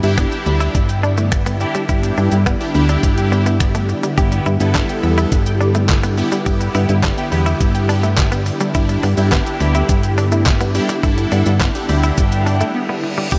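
Drenched in huge ambient reverb for a dreamy haze, this summery, carefree dance-pop excerpt pumps with sidechain on a fat, detuned sawtooth polysynth with chorus and phaser, vintage string-machine violas with ensemble chorus, and a tight sequenced synth spinning filter-plucked arpeggios through tape echo, over a punchy, round FM bass and an up-front, thumpy, detuned 8-bit drum machine of kick, snare, hi-hat, shaker, handclaps, finger snaps and crash. A twangy, direct-recorded clean electric guitar riff sits in the background from 0.2 s, the chords move between Em7 and G6, and a reverse cymbal marks a break at 12.7 s.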